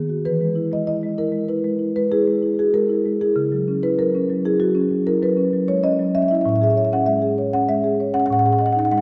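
A woody marimba of rosewood bars, struck with medium mallets and sitting up front, plays alone through this flowing, hypnotic 9-second passage of a contemporary classical solo piece in C# minor, moving rubato around 97 BPM in 5/4 through E, C#madd11, Amaj7 and F#sus2/A chords, set in a dark production with the lingering wash of a large scoring-stage reverb.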